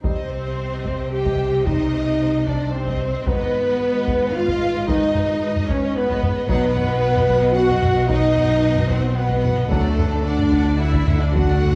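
Bathed in a wet recital-hall reverb with a small-room ambience, this epic, relentless cinematic orchestral cue, cut from a longer piece, moves at 112 BPM in 3/4 through Cm, G#m, B and D, with a rich violin section carrying the melody from the background, a second violin line with soft attacks and portamento, clear, distant violas in accompaniment, prominent mellow French horns holding sustained chords, bright, close-miked trombones sustaining chords in the background until 11.5 seconds, focused cellos and smooth, even double basses on the bass, and a taiko ensemble played with heavy sticks.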